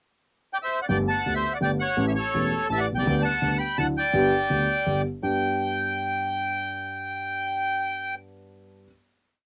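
A rubato waltz-time tango in 3/4 at 166 BPM, with the accent on one, this short, complete piece in G major feels passionate and elegant, tuned slightly low at A4 = 436 Hz. A reedy, bright bandoneon enters at 0.5 s with an up-front, motif-based melody built from sentence phrases and partly doubled in thirds. From 0.9 s, a dark, mellow, smooth concert grand piano with cassette-tape colour, deep bass and audible action noise supplies up-front, intimate accompaniment in a small booth-like room, before the home-recorded piece settles on a final chord at 5.2 s.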